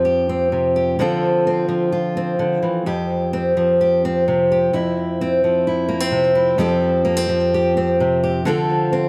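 Folk in F major at 128 BPM with a hopeful, nostalgic mood, this brief cut from a longer piece features a warm, up-front fingerpicked steel-string acoustic guitar playing alone from F2 to C5 with tape echo in light reverb, moving through Fsus2, Dm7, F5 and Fadd9 as its opening phrase returns at 6.6 seconds.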